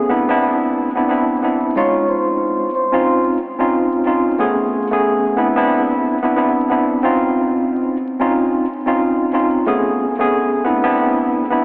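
A worn, slightly out-of-tune tine electric piano sits up front in this nostalgic, soulful hip hop fragment, playing clean chords through the full 11.6 seconds as if heard through built-in speakers. The harmony drifts through lush Cmaj9, Dbmaj9 and Amaj9 chords over a swung sixteenth-note feel in 4/4, tuned a touch below standard pitch. From 1.8 to 3.2 seconds, a vibraphone struck with soft mallets adds a brief, quieter melodic phrase, its metallic, ringing tone mellow, warm and airy, carried by a fast motor vibrato and a tape echo. Both parts are trimmed with high- and low-pass filtering. The dreamy mix is soaked in a huge ambient reverb and layered with vinyl crackle and a thin AM radio character, giving the piece a hazy, faded glow.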